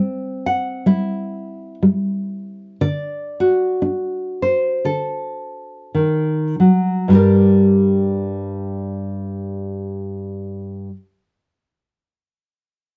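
A fingerpicked nylon-string guitar, up front and warm, carries this short solo folk excerpt on its own from 0.0 to 11.0 seconds, spanning from G2 up to F#5. The mood is haunting and wistful, set in G harmonic minor at an unhurried 51-64 BPM in 4/4, with a gentle swing on the eighth notes. The opening passage slows down through its first 7.1 seconds, moving from C to D before settling on G minor as a new section begins. The playing has a classical touch, and light reverb gives the guitar a little air around it. Cut from a longer piece, it feels like a wistful moment caught in passing.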